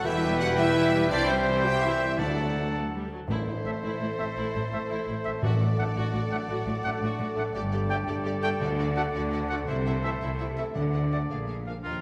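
Cinematic orchestral music in 6/8, triumphant and adventurous, taken from a longer piece. Two symphonic violin sections sit in the background: one carries the melody with a smooth top, and the other, rich and focused, adds a second line. A clear oboe, an airy flute ensemble with crisp attack and a distant clarinet weave further lines around them. A very quiet viola section accompanies, a dark, roomy French horn section and a subdued trombone section hold sustained chords, a mellow trumpet punctuates with stabs, and a ringing concert harp spins arpeggios. Bowed cello and double bass sections anchor the bass with lush vibrato, and round timpani played with soft mallets enter at 2.2 seconds and return at 8.6 seconds. From 3.3 seconds the music builds toward a closing Bb7 chord, with the whole ensemble set in a wet scoring-stage reverb.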